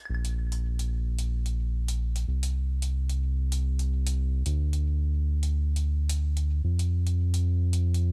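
IDM with a playful, wistful mood, this short cut from a longer piece moves in 4/4 with a light swing on the sixteenths. A round analog bass sits up front from 0.1 to 8.1 seconds, deep and dark, blending sawtooth and sine tones with ring modulation and tube saturation for an evolving, sustained sound with a fast attack. Electronic claves and hi-hat run alongside it for the same span, set much lower in the mix, their metallic hats carrying a tape-warm, analog character from being re-recorded in a small room. The overall sound is dry, with little reverb, so the bass's bulk and the percussion's metallic detail stay close and clear.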